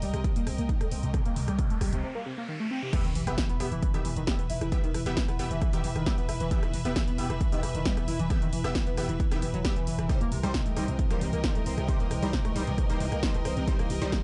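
Intense and hypnotic, this driving peak-time techno cut is taken from a longer piece and moves in a straight 4/4 pulse. A heavy, layered electronic kick sits up front from 0.2 seconds, joined by a punchy, tape-warm analog drum machine with snare, rim click, hi-hat and crash, while a growling, buzzy 808-style bass runs underneath through a low-pass filter. Over this a gritty, screaming overdriven synth lead plays a guitar-like riff coated in distortion, phaser, lush chorus and digital delay, and a clear, focused studio string section adds close, bowed texture with vibrato. A riser and sub drop carry the short break into the drop at 2.9 seconds, where an aggressive, thick rave stab with detuned unison saws, filter sweeps and reverb enters, followed at 4.4 seconds by a deep, moody ambient pad droning on a single low note. The harmony shifts between C minor and E minor, and sidechain pumping makes the lead, bass, strings, stabs, pad and the drum machine's hats and cymbals breathe around the kick. 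The production is dark and lightly reverberant, with a rolled-off top end.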